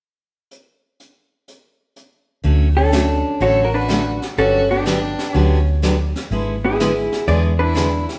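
Country western swing with a swinging, playful mood, cut from a longer piece, where a distant, roomy brushed kit with a high-tuned snare plays alone from 0.5 s until a bright, full-bodied dreadnought acoustic guitar and a round, foam-muted electric bass up front join at 2.4 s over Dmaj7, Gmaj7 and E7/G#, before a dark, compressed hollow-body electric guitar takes the melody at 2.8 s alongside a rich, focused bowed fiddle with light vibrato on a second line, all heard as a band playing live in a stone room with a wet reverb.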